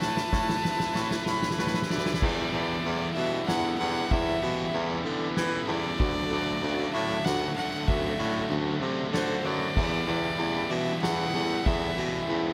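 A soft-mallet drum fill builds over the first 2.2 seconds, its dark cymbals and boomy kick sounding under an Amadd9 chord before this cathartic, melancholic post-rock excerpt settles onto Em7 in a straight 3/4 at 95 BPM in E minor. A clear, biting violin with light vibrato and an airy bow carries the melody, while a punchy, forceful baritone saxophone holds the bass up front and a bright, double-tracked distorted guitar drives a riff. Further back, a twangy, compressed electric guitar plays fingered arpeggios with subtle chorus and analog delay, all in a small room with light reverb as the chords move through Dadd9 and back to Em7.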